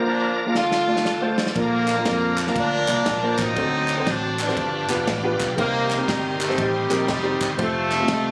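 Uptempo gospel at 119 BPM in Bb major, soulful and jubilant, with a swung 4/4 feel. An up-front horn section carries the melody over woody upright piano with audible action noise, while a shouting tonewheel organ holds chords in the background through slow rotary speaker, overdrive and chorus vibrato. The drum kit enters at 0.6 s with a fill and a punchy kick, the round fingered bass joins at 1.6 s, and crisp group handclaps arrive at 1.9 s, all in a lightly reverberant room captured on a phone.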